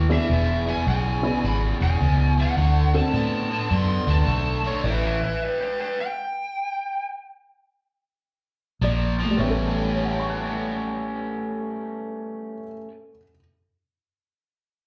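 Swaggering and gritty, this electric blues shuffle at 106 BPM in A mixolydian, cut from a longer live club set heard through the venue's PA, pairs a bright, overdriven garage-guitar riff with slapback echo and a round, punchy foam-muted bass, while a jangly, detuned honky-tonk upright piano comps and a lead guitar through a small cranked amp plays the melody with plate reverb, holding the spotlight alone from 5.2 until 7.1 seconds before the band returns at 8.8 seconds, joined by a mellow, woody second piano line in the background.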